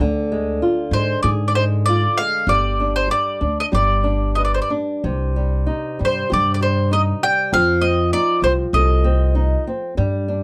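A passionate, mournful fado-style ballad at 97 BPM in a loose rubato 4/4, cut from a longer piece, where a fingerpicked flamenco guitar with audible finger squeak and a woody, growly pizzicato upright bass play up front from the start, a round, double-strung mandolin enters at 0.9 s with a picked high melody over chords moving from Ddim through G and Cm to F7, and light reverb gives the acoustic trio a gentle sense of space.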